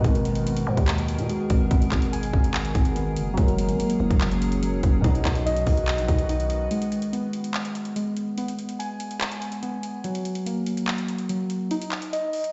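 Heard through a big sound system in a bare stone room with the top end dulled, this menacing, hard-hitting half-time trap hip hop piece in G# minor at 144 BPM sets up-front electronic drums with a hard-clipped kick, metallic hats and handclaps against a growling, buzzy 808-style bass, muted felt-like synth keys playing arpeggios through chorus and digital delay, a thick-felt upright piano tucked in the background and a glassy, ethereal FM pad, before the piano, pad and bass drop out at 6.7 s for a break carried by the drums and keys until 12.5 s.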